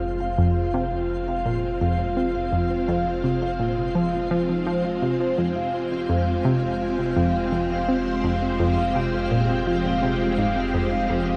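Mysterious and cosmic, this brief slice of sequencer-driven ambient space music sets a nasal, detuned analog pluck riff with chorus, phaser and analog delay entering at 0.4 s against ringing soft-mallet vibraphone arpeggios through analog delay, lush string-machine chords fading in under ensemble chorus, a deep sine sub bass holding F1 with tube saturation, and a sparkling granular texture fading in, set in the background, all on a single F minor chord and bathed in shimmer reverb and worn, warbling cassette tape.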